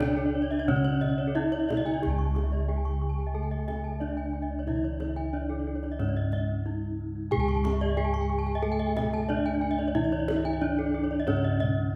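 Brilliant and ceremonial, this Balinese gamelan passage moves at 91 BPM in 4/4 in C# pelog, cut from a longer piece and heard from further back in a reverberant recital hall. A bright, horn-mallet bronze metallophone carries the melody with shimmering beats from its paired tuning and a tape echo. Beneath it, a mellow, padded-mallet metallophone plays a soft, close-miked accompaniment, while round, beating bossed gongs sit up front on the bass and a tight kendang plays hard-handed in the distant background. Two ringing metallophones play arpeggios above, one boxy and warm, the other dry and full, entering at 0.2 s, as the music shifts into a new section at 2.0 s.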